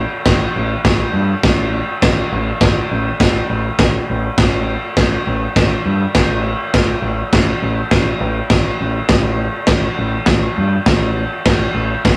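Raw and menacing, this short garage rock cut at 102 BPM in a straight 4/4 pairs a growling picked electric bass, overdriven and tube-saturated from the start, with a crunchy breakbeat drum kit entering at 0.3 seconds, its punchy kick, medium-tuned snare and dark crash cymbal sitting up front with a gritty, rolled-off top, all caught in a rough rehearsal-room recording with moderate reverb.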